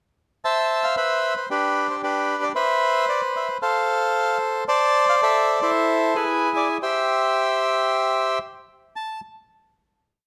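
Tango for solo bandoneon, tense and passionate, taken rubato around 113 BPM in 4/4. The reedy, dark, smooth bandoneon sits up front and shapes a motif-based melody in period phrases between D4 and A5, moving through harmonies such as Fmaj7#11, Cmaj7 and Am/E before closing on E and C/G. The instrument plays from 0.4 to 9.2 seconds, and its final note rings into a moderate, large studio reverb until 10.3 seconds.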